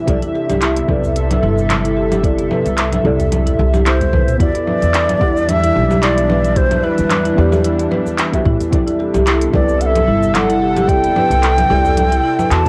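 Cassette-hissed and set in a small, moderately reverberant room, this meditative organic downtempo cut in E minor at 111 BPM swings gently over a soft tape-warm electronic kick, a crisp-hatted organic electronic kit of congas, handclaps, shaker and toms, a very quiet cracking djembe and a woody pizzicato upright bass up front, while a deep, nasal chord stab with chorus and analog delay, an airy detuned pad pumping under sidechain, a dark rosewood marimba playing arpeggios and a faint drifting glass-harmonics texture that stops at 4.4 seconds frame a bright, reedy ney melody with vibrato and tape echo that enters at 3.9 seconds, just before a drum fill, as the chords move from C6 to Em7 and back.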